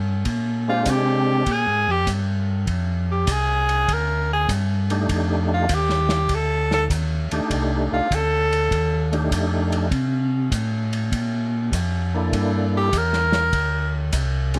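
A mellow, round tonewheel organ bass with chorus vibrato and slow rotary speaker opens this greasy, swinging soul jazz organ trio excerpt, joined at 0.3 s by a soul drum kit with dark cymbals and a tight kick in a small, pumping room, then at 0.7 s by a fat, lightly overdriven percussive organ with key click and an edgy, punchy tenor saxophone soloing up front with scooped notes, which drops out at 9.1 s before returning briefly, under light reverb over Bb13, F13 and C13 chords.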